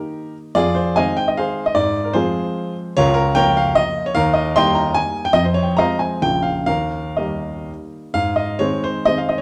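A baby grand piano plays alone from the first moment, in a proud, rustic romantic dance in triple time with dotted rhythms and a flexible, rubato feel. The piano sounds intimate, natural and up front, with its action noise audible, and it spans from deep bass notes to the upper treble inside a moderate recital-hall reverb and a dark, warm production. This short fragment of a longer piece moves through shifting minor-tinged harmonies before arriving on a new section at 8.2 seconds, ending at 9.4 seconds.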